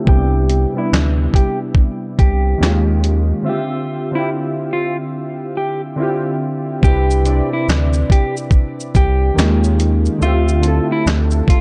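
This short excerpt of mellow, cosy lo-fi hip hop opens with warbly synth keys, their detuned, nostalgic tone softened by chorus, cassette-tape wear and a low-pass filter, moving through Cmaj9, Eb9sus4 and Dm11 in C major at 71 BPM with a lazy swing on the sixteenths. Almost at once a dusty, sampler-style drum kit comes in up front, its compressed, gritty sound built on a thumpy kick and fat snare with handclaps, hi-hat and shaker. A round, deep analog bass sits just as forward, its sustained, evolving tone holding the low end. Quietly above it all, a clean, fingered electric guitar carries the melody in a narrow, dark-toned range, muffled by its own low-pass filter. A break arrives at 3.5 seconds before the chord cycle begins again at 6.8 seconds, all wrapped in light reverb and a dark, warm production.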